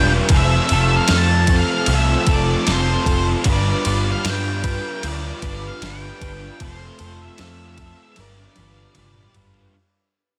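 A straight 4/4 pulse at 76 BPM comes from a clean 12-bit drum machine with a thumpy kick, fat snare, ride and toms, entering at 0.3 seconds and closing with a fill from 8.2 seconds, beneath a round, punchy overdriven picked bass, a double-tracked, compressed guitar riff coloured by analog chorus, and a dark octave-fuzz lead melody trailing diffuse ambient delay, all moving between F and G7 in G mixolydian in this blissful, wistful shoegaze and dream pop excerpt that fades out across its length under light reverb.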